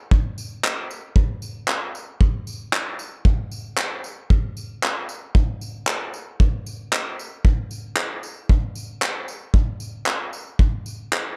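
Pop with a carefree, easy-going mood at 114 BPM in 4/4 with a 60% sixteenth-note swing, this short cut from a longer piece features only a loose indie acoustic drum kit with handclaps, a tight kick and tambourine, playing up front in a small, pumping room from 0.1 to 11.3 seconds, in a dark production with little reverb.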